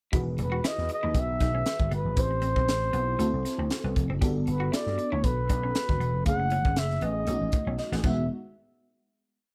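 A glossy small-room sound frames this breezy 1980s jazz-funk pop piece in E major at 118 BPM with a light sixteenth-note swing, where a breathy, whispered flugelhorn with slapback echo carries a motif-based melody over punchy slap bass with ghost notes and slides, a crisp fusion kit with a high-tuned snare, a dark, muted semi-hollow guitar riff, and lush, detuned electric piano chords with phaser and chorus, moving from Emaj9 through Am9, D7, Gmaj9, F#m7 and B7 before piano and drum fills lead to a final hit at 8.3 seconds.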